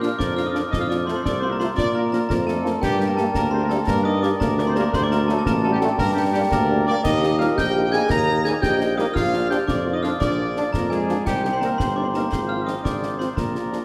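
Bathed in a wet scoring-stage reverb, this rousing, proud excerpt of a military-style wind band march in 6/8 at 114 BPM settles into Eb major from 7.0 s. A mellow, distant trumpet section carries the melody over an up-front tuba bass. A dark, smooth-topped euphonium, a bell-like glockenspiel struck with hard plastic mallets and a background woodwind section with light vibrato add second lines. Very quiet French horns and trombones supply accompaniment and sustained chords. Close, dry concert snare, bass drum and dark clash cymbals drive the march throughout.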